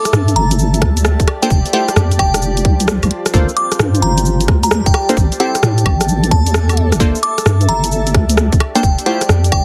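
Skippy and bouncy, this two-step UK garage cut moves at 131 BPM in G dorian with a swung 16th-note feel, opening on a glassy, crystalline FM synth bell melody with chorus and digital delay over a cloudy, blurred granular pad that pumps under sidechain inside its own reverb. A deep, dark wobble bass sits up front with chorus, while a garage kit of bright hats, cabasa, rim click and woodblock arrives alongside it, and a tight, layered electronic kick joins at 0.8 seconds. From 1.4 seconds punchy, detuned sawtooth chord stabs with a filter pluck and moving notch cycle through chords like Gm11, Am7 and Fmaj9, all wrapped in light reverb and a heavily compressed radio sound.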